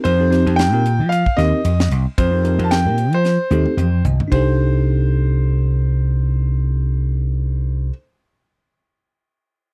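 A dry, close recording with a 1970s studio character opens this short cut from a longer piece of intense, funky electric jazz fusion in a swung 4/4. A bright grand piano carries the melody in its upper register, its brilliant tone touched with slapback echo and the audible noise of its action. Beneath it, a bell-like tine electric piano plays clean accompaniment through a phaser, while an amped vintage slap bass sits punchy and up front as the loudest part. A crisp, polished drum kit with a high-tuned snare and a punchy kick drives the groove and plays a fill from 3.2 seconds, as the electric piano adds a fill of its own from 3.5 seconds. The harmony moves from an F9sus4 chord to Cm69 as the second section begins at 4.3 seconds, and the drums stop shortly after at 4.5 seconds, leaving piano, electric piano and bass to carry the section onward.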